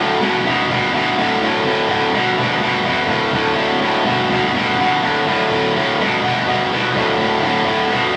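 Heavy, brooding rock at 125 BPM in a straight 4/4, built on a D5 chord and cut from a longer piece. A tight, bright, distorted electric guitar plays alone and up front for the full 8.2 seconds, picked and double-tracked in a low register from D2 to B2. The live-band-in-one-room sound is bathed in a wet, large studio reverb that gives the guitar a cavernous weight.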